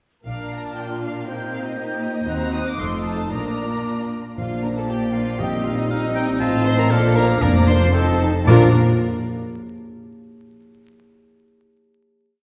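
Cheerful and spirited, this brief classical-period movement for symphony orchestra moves at a quick pace in two with a rubato feel, its melody carried by a dark, woody violin section doubling the tune at the octave. A warm violin section with intimate, soft-attack lines, expressive violas with tremolo, rich sustained cellos and pizzicato double basses support it, while an airy flute group and a mellow, distant clarinet add chords in the rhythm of the tune. From 4.4 seconds a bassoon and soft-mallet timpani strokes on bass notes join, followed by very quiet French horn chords and a bright oboe counter-melody, all set back in a wet scoring-stage reverb with a layer of vinyl crackle.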